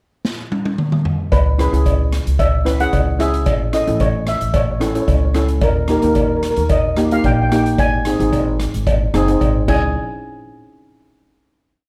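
A street-band drum kit opens this short calypso in C# minor with a fill at 0.2 s, its boomy kick, medium-tuned snare and dark cymbals sitting up front in a big, polished room. At 1.3 s the verse begins at 111 BPM in a straight 4/4, as a woody, thumpy pizzicato upright bass on gut strings lays down a syncopated figure and a distant cowbell taps out its pattern from a large room. A lead steel pan, played with medium rubber sticks, carries an airy, shimmering, motif-based melody in sentence-like phrases. Cello pans struck with hard rubber sticks add boxy, up-front triad chords, moving through C#m7, A, D# and G# before settling on C#m. The mood is brooding and cool, with light reverb over the whole piece, and it closes on a final hit at 10.0 s.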